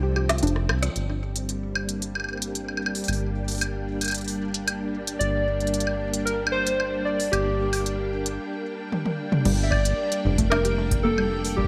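This eerie, cerebral IDM excerpt opens on a brief break over an Fadd9 chord, with a silky, mellow string machine, a warbling, dusty pluck playing arpeggios, a rubbery acid bass and a very quiet bubbling texture of random filter steps, capped by a drum fill and a band accent at 0.8 seconds. At 1.0 seconds the harmony settles on G minor at a straight 113 BPM in 4/4, where the string machine holds soft, slow-blooming chords with ensemble chorus and the deep, resonant sawtooth bass sits up front with tube saturation. An organic electronic kit drives the groove with a woody snare, smooth hats, rim clicks, woodblock, toms and crash, while a nostalgic, lo-fi square-and-saw keys melody with chorus and delay carries the tune from 5.2 seconds. After another fill, the pluck returns with its detuned, noise-flecked arpeggios and digital delay, and from 9.7 seconds an analog kick with a tape-warmed, small-room character deepens the low end. 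A moderate plate reverb and bright 1980s-style digital production give the piece a glossy yet haunted sheen.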